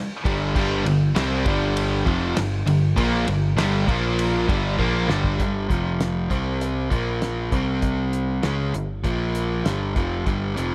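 A cranked stack guitar and a thick, double-tracked fuzz guitar open this sunny, driving classic rock excerpt with a bright riff in the background at 0.2 s. An up-front overdriven semi-hollow guitar, a growly, punchy picked bass and a dry, cloth-damped drum kit with a fat snare and dark cymbals join them at a straight 99 BPM in 4/4, moving through G5, Bb5, F5 and C5 power chords in a small room. After a drum fill, the two background guitars stop at 5.4 s, and the hollow-body guitar, bass and drums carry the second section.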